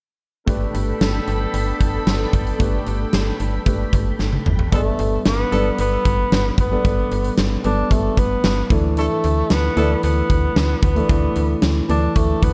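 An uplifting, nostalgic 1980s-style pop passage in G major at 113 BPM opens at 0.5 s with a big-room arena drum kit and punchy kick, a snappy, metallic slap-like FM bass, polished grand piano accompaniment, a vintage, warbling organ-string pad with ensemble chorus and clear horn stabs with delay, before a drum fill leads at 4.7 s into a breathy tenor saxophone melody with vibrato, all set in a dark production with light reverb.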